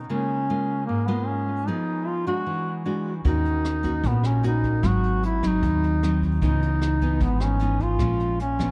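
An echo-heavy, cassette-tape sound with light studio reverb frames this melancholic, intimate bossa nova excerpt at 152 BPM in straight 4/4. A full-bodied, fingerpicked classical nylon-string guitar with audible finger squeak and a warm solo duduk in folk style, full of vibrato and scooped notes over a smooth top, both carry dub echo and sit up front from the start, moving through chords such as C#6, E9 and G#7. At 3.2 seconds a woody, thumpy pizzicato upright bass on gut strings comes in up front, and at 3.3 seconds a distant, roomy brush kit joins with a boomy kick, hi-hat and rim click under a rolled-off top.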